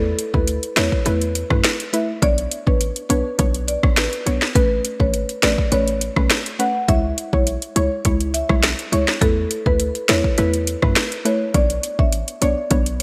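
Up front, an electronic afro-pop drum kit with a deep kick, sharp snare, metallic hats and rim clicks drives this sunny, summery dancehall excerpt, joined at 0.3 s by a woody marimba melody trailed by digital delay. Underneath, a punchy, tight 808-style bass and a soft, round, dark pluck with chorus and sidechain pumping carry a chord cycle moving from Esus4 through Bmadd9, Aadd9 and C#m. The mix has a bright 1980s-style digital sheen with light reverb and digital ambience.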